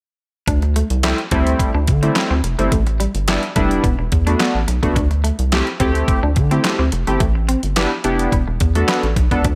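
A rubbery, hollow square-wave bass sits up front in this short cut from an early-eighties boogie funk track, bouncing through a dark, resonant filter pluck at 107 BPM in a straight 4/4. Beside it, a detuned 8-bit drum machine with a sampler-style edge punches out a thumpy kick, medium-tuned snare, handclaps and hi-hat, its sound caught in a small room. A glossy, retro polysynth joins at 1.0 seconds, its detuned pulse and sawtooth tones shimmering with pulse-width modulation, chorus and a filter sweep. Lower in the mix, a twangy, fingered electric guitar at the edge of break-up plays a riff through analog chorus. The harmony moves through suspended ninth chords on D, A and E, and light digital reverb gives the late-night, danceable groove a gentle sheen.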